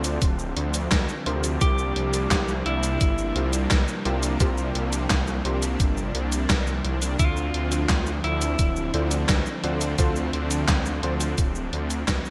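A straight 4/4 synthwave groove is driven by a thumpy electronic kick and a sampler-style 80s drum machine of handclaps, hi-hat, shaker and an up-front snare with gated reverb, both re-recorded in a large room, under a thick, detuned saw bass with chorus. A smooth, bright analog pad with chorus and sidechain pumping holds sustained chords moving from Dm7 to C7sus4 and back, while a vintage electric grand piano with a clangy low end adds short stabs with ensemble chorus and delay in the background. From 1.6 to 9.1 seconds a dark, slightly broken-up lead guitar carries the melody through digital delay, all set in a lush hall and a nocturnal, moody 1980s-style digital production that fades out from 10.9 seconds in this excerpt of a longer piece.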